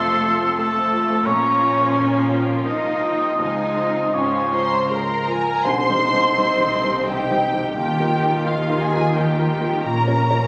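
A present, lightly vibrato oboe stands out at the front of this hopeful, tender cinematic film-score fragment, singing a classical-style solo second line before falling away at 4.9 s. Above it, a dark, veiled section of muted violins carries the melody up front, while a second, more distant violin line sits in the background. Violas, also con sordino, fill out the harmony with smooth bowed tone, while lush muted cellos and distant muted double basses anchor the bottom. A vintage-sounding grand piano with short sustain adds smooth accompaniment. At 5.6 s the group lands a shared accent, and a very quiet, close tam-tam sounds darkly until 8.4 s. Moving at 79-90 BPM in a rubato 3/4, the orchestra sits in a moderate scoring-stage space, yet the sound is captured on a phone in the room, so club-like reverb, compression and a dulled top end colour the whole cue.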